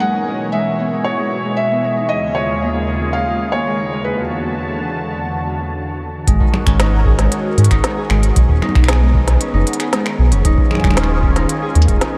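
A soft, mellow felt-muted upright piano carries the melody through a diffuse ambient delay until 4.2 s in this melancholic, intricate IDM excerpt at 115 BPM, set over a swirling, detuned phased analog pad and ringing fingerpicked Celtic harp arpeggios under a filter sweep, before a round, dark analog bass, an overdriven electronic kick in the background and an organic electronic kit of congas, finger snaps, crisp hi-hat and woody snare with tape echo enter at 6.3 s, all soaked in a dreamy, huge reverb.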